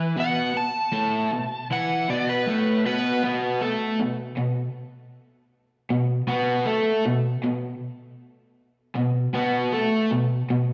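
This raunchy, swaggering rock fragment opens on a B5 chord, with a raw garage guitar riff and an overdriven slide guitar melody starting together at a straight, unhurried pace. The slide guitar carries a warm, fingered line in a high register, then drops out at 3.2 seconds. The electric garage guitar is bright, picked and double-tracked, sitting up front in the mix. Its overdrive is coloured by spring reverb and a slapback echo. That riff continues alone through the second section until the clip cuts off at 10.7 seconds. Heard through a venue's PA, the live gig sound carries club reverb along with a light reverb and digital ambience.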